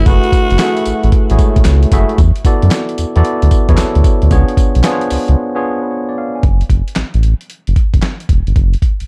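New jack swing R&B with a slick, confident strut, this short cut from a longer piece rides a swung sixteenth-note groove in four. A raspy, edgy alto saxophone opens with a brief solo phrase that lasts only until 1.1 seconds, its scooped notes, vibrato and delay giving it a pop-style gleam. Beneath it, a worn, slightly out-of-tune tine electric piano, lightly overdriven through a combo amp, voices the chords F#m9, E9sus4 and C#7b9 before dropping out at 6.6 seconds. A round analog bass blending sawtooth and sine tones sits deep and up front with a fast attack and sustained notes. A gritty, compressed sampler-style drum kit, re-recorded in a small room, punches with a thumpy kick, medium-tuned snare, hi-hat, handclaps and tambourine, and a break falls just before the music moves to a new section on F#m at 6.4 seconds. The production is dark and dry, with little reverb.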